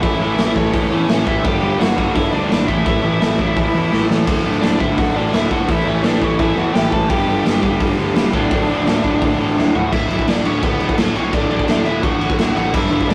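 Punk rock at 170 BPM in D major, upbeat and rebellious, this 13-second cut from a longer piece puts a raw garage drum kit up front, with a punchy kick, medium-tuned snare, crash, hi-hat and toms, and fills at 3.9 and 9.6 seconds, beneath a biting, overdriven lead guitar melody, while crunchy and cranked-stack guitars pick riffs in the background alongside a very quiet, double-tracked distorted guitar riff, the stack guitar dropping out between 9.9 and 12.7 seconds, over a growly fuzz bass, all captured as a rough rehearsal-room recording with warm saturation and light reverb.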